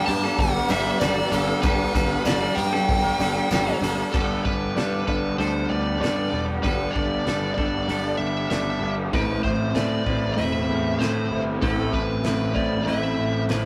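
A fuzzed lead guitar melody opens over a dark, detuned analog pad, a shimmering fingerpicked twelve-string and two riffs, one from an overdriven garage guitar and one from a clean, hollow-bodied semi-hollow electric, in this blissful, hazy shoegaze and dream pop excerpt at 96 BPM in G major. A punchy fuzz bass and a loose indie drum kit with a fat snare and dark cymbals join almost at once, while a jingly tambourine sits low in the mix until 4.0 s and the pad ends at 4.1 s. The rough rehearsal-room sound, soaked in small-room reverb, rides a Gadd9 chord before moving to Amadd9 at 9.1 s.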